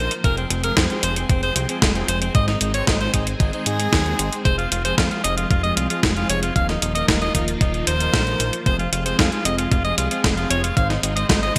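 Danceable and bittersweet, this italo disco excerpt in F minor moves at 114 BPM in a straight 4/4 over an Fm, Ab and Ebsus2 progression, with an edgy, forceful alto saxophone melody carrying delay up front, a swirling string machine holding background chords through ensemble chorus, phaser and vintage 12-bit sampler grit, brassy analog synth stabs with chorus and vibrato, and a fat, detuned sawtooth bass, while a clean 12-bit drum machine plays hi-hat and an overdriven snare with gated reverb from 0.1 s and a thumpy, overdriven electronic kick joins at 0.2 s, all set in a lush hall reverb with bright 1980s-style digital production.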